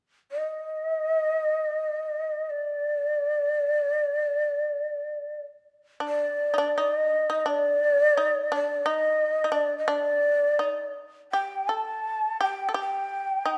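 This excerpt of Japanese traditional chamber music is austere and calm, moving in a free, rubato 2/4 at roughly 64-89 BPM. A breathy, mellow shakuhachi carries the melody from 0.3 seconds, its bamboo tone up front with touches of vibrato and tongued chiff. At 6.0 seconds a bright, buzzing, plectrum-plucked shamisen enters as a quieter second line beneath it, all set in a moderate recital-hall reverb.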